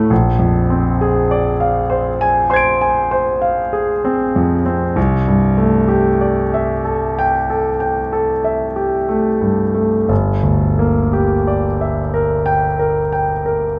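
Luminous and dreamy, this impressionist classical excerpt features a single concert grand piano playing alone at a slow, rubato 43-51 BPM in 4/4, spanning G1 to D7. The piano sounds clear and natural, with a deep bass, and sits up front through close, detailed microphones within a moderate recital hall reverb. Its harmony drifts from Bb9 to C69 at 5.0 seconds and settles on Gm6 at 10.1 seconds.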